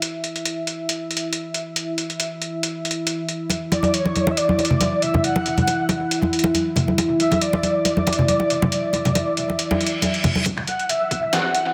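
A lightly swung half-time groove drives this heavy, meditative deep dubstep excerpt, with finger snaps, hi-hat and a medium-tuned snare from a muffled, overdriven, pitched-down trip hop sampler-style kit sitting up front alongside a deep, detuned sawtooth analog pad that broods in sustained chords with chorus. Ringing, close acoustic congas with tape echo enter at 3.5 s, and moments later a breathy, flute-like synth lead floats in with tremolo, vibrato, ensemble chorus and echo. An electronic reverse cymbal arrives at 9.7 s and a thumpy, compressed electronic kick lands at 10.5 s as a filter-swept build-up closes out the echo-heavy mix.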